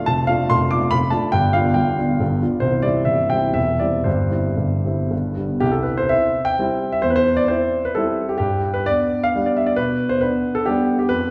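Dotted rhythms drive this proud, rustic triple-time dance in 3/4, its rubato tempo pushing and easing between 110 and 152 BPM in C major. A warm baby grand piano plays alone, up front and spanning C1 to D6, as the opening phrase turns from Dm/F through G7 to C, and a second section begins at 5.6 seconds, moving between C and G chords. A wet recital hall reverb surrounds this romantic classical passage, which is cut from a longer piece and heard from further back in the room.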